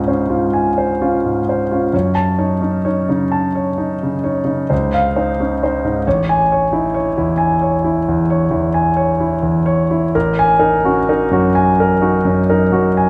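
Flowing in 9/8 and played with free, elastic rubato, this fragment of a longer impressionist piano piece drifts by in a serene, hazy mood. A solo grand piano carries everything, spanning from A1 up to A5, with a clear, intimate tone placed up front, and the natural sound lets the audible action noise of the instrument come through. The harmony floats through lush extended chords, moving from Dbmaj7 to Gbm6, then Dbmaj9 and Amaj7, before settling on Gb69/A at 10.1 seconds. A recital hall reverb with a 1.4 second decay surrounds the piano in a wet, glowing halo that deepens the dreamy atmosphere. Tuned slightly high at A4 = 441 Hz, the instrument sounds for the whole 13.1 seconds as a single unbroken, contemplative passage.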